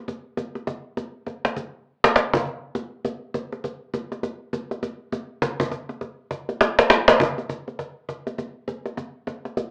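Country music with a down-home, playful mood, this short excerpt cut from a longer piece rides a swinging 4/4 feel. A lone cajon carries the whole thing, entering at 0.1 seconds and playing through to 9.7 seconds. Its tone is woody and acoustic, with faint snares and soft hands, set up front in a small room. The cajon breaks into a fill at 1.9 seconds and another from 6.6 to 7.2 seconds, where the opening section repeats. The recording is bathed in a wet club reverb and filtered to resemble an AM radio broadcast.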